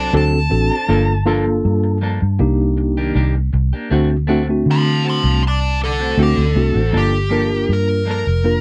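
A dark, smooth lead guitar with overdrive carries the melody and takes a solo from the start until 6.9 seconds, over a slow, brooding blues in G minor at 79 BPM that moves through D7, Gm9 and Cm9 before settling back on Gm9. Up front, a round, punchy, foam-muted electric bass anchors the low end, while a worn, slightly out-of-tune tine electric piano with medium tremolo plays accompaniment and a clean electric guitar adds tremolo-tinged stabs. The dry, close sound of a 1970s-style studio gives this short, smoky excerpt from a longer piece an intimate feel.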